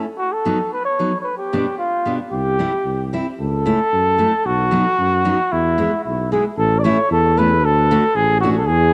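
A warm flugelhorn leads this jolly, festive fragment of alpine folk dance music, carrying the melody up front with a light vibrato and a vintage, classical-style poise. Beneath it, a bright, full-bodied steel-string dreadnought guitar is fingerpicked in accompaniment, its finger squeak audible. Both the horn and the guitar carry the grain of cassette tape. At 2.3 seconds a mellow tuba joins on the bass line, smooth on top and placed prominently in the mix. The music moves in a straight two-beat metre and passes into a new section at 6.6 seconds, all of it set in a home cassette recording bathed in a lush hall reverb that gives the small band an airy sense of space.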